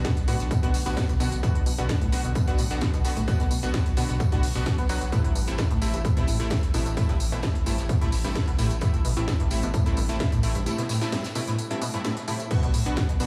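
This excerpt of driving, intense peak-time techno opens at once with every part together at 130 BPM in a straight 4/4. A heavy, layered electronic kick leads the mix, joined by a techno kit with a cracking snare, smooth hats, tambourine and crash. Both kits carry a tape-warm, small-room character, while a very quiet acoustic funk kit with a high-tuned snare sits underneath. A deep, thick saturated sub bass pumps against the kick through a low-pass filter. Above it, a nasal, detuned sequenced synth riff with chorus, 12-bit sampler grit and tape echo sits in the background, and bright, punchy supersaw stabs with tape echo cut through. The harmony moves from Bm to Am at 5.1 seconds, with a break from 10.7 to 12.5 seconds before Bm returns, all bathed in a lush, dreamy hall reverb.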